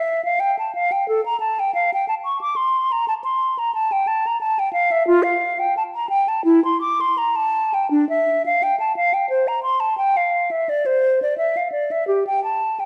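A dark, hollow-toned recording in a moderate recital hall reverb presents a solemn, grave excerpt of a baroque-style classical fantasia for unaccompanied concert flute, played with rubato over uneven beats, its close-miked, airy sound up front with crisp attacks and vibrato as it ranges from D4 to D6 across 12.9 seconds.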